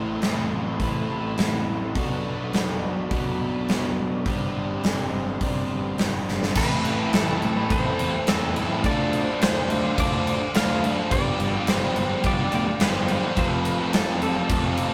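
A melancholic, dreamy shoegaze and dream-pop excerpt opens on a mellow, chorused analog pad, two overdriven guitar riffs (one crunchy, one set back in the mix) and a round, fuzzed bass, with a big, up-front rock kit of punchy kick and bright cymbals joining almost at once; after a drum fill at 6.3 seconds, a twangy, compressed clean guitar melody and a very quiet, double-tracked biting guitar riff enter at 6.6 seconds, set in a rough rehearsal-room sound.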